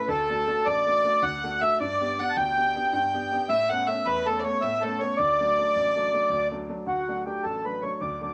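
A home cassette recording in a small, wet-sounding booth carries this short, cheerful excerpt of Celtic folk in D major, moving in a straight 9/8 at 106 dotted-quarter beats per minute. A mellow, reedy accordion sits close and up front with the melody throughout, while a single bowed fiddle with a focused tone and light vibrato plays a second line until 6.5 seconds. A bright, woody upright piano, slightly detuned, gives the accompaniment, and the cassette tape coloring and plate reverb on the fiddle and piano add a homespun glow as the chords pass from D through G and Aadd9 before a new section begins at 6.9 seconds.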